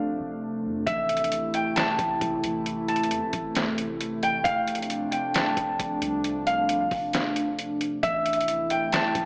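A ringing, fingerpicked Celtic harp carries the melody through a low-pass filter and analog delay over a warbling, detuned tape-like pad that pumps with sidechain and chorus, a deep, round 808-style bass in the background, and muffled, pitched-down sampler drums with a thumpy kick that enter at 0.9 s, all in a hazy, melancholic half-time cloud-rap hip hop fragment whose dreamy mix is soaked in plate reverb and has a small-speaker sound.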